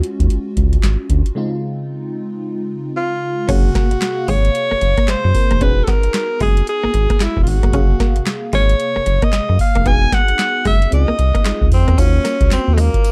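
A bouncy new jack swing groove at 113 BPM swings its 16ths on a booming analog drum machine, up front with a deep kick, crisp snare, metallic hats, handclaps, tambourine and crash, alongside a round sawtooth-and-sine bass touched with ring modulation. A lush, dreamy FM electric piano with a soft pad layer, treated with chorus and phaser, moves from Ebm11 to Dbmaj7 for a break at 1.4 s. A bright, punchy alto saxophone then takes a slick pop-style solo from 3.0 s with scooped notes and light vibrato, joined at 3.5 s by a clean, picked, direct-recorded electric guitar riff with ensemble chorus over lush Gbmaj9#11 and Emaj9 chords, all set in digital ambience with a dark, warm production.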